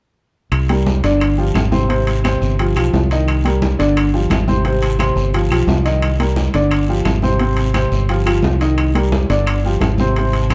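A slightly detuned, vintage upright piano sits up front from 0.7 s, voicing chords such as Cm9, Abmaj7 and G7 over a round, dark fingered electric bass in this passionate, danceable salsa excerpt at 174 BPM in C minor, while ringing metal-shell timbales, soft-handed congas in the background, a raspy guiro and very quiet woody claves fill out the percussion inside a large studio reverb.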